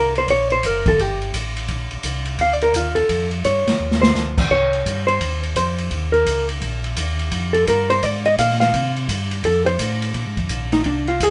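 This soul jazz organ trio excerpt swings at 170 BPM in 4/4, with a bluesy, swinging mood throughout its 11.3 seconds. A dark, clean hollow-body jazz guitar sits up front and takes the solo across the whole clip, its fingered lines moving between D4 and F5. Underneath, a mellow, round tonewheel organ carries the bass line with vibrato, audible key click and a slow rotary speaker. The open jazz drum kit enters at 0.2 seconds, with boomy kick, medium-tuned snare, hi-hat, ride and crash, its dark cymbals and rolled-off top keeping the kit smooth, and a short fill lands at 3.8 seconds. The changes shift from an A13b9/F# through Bbadd9, Fsus2, a run of power chords and an F before settling on Bb9 at 10.1 seconds. The band plays live in one room with moderate stone room reverb, and the sound has a muted top end.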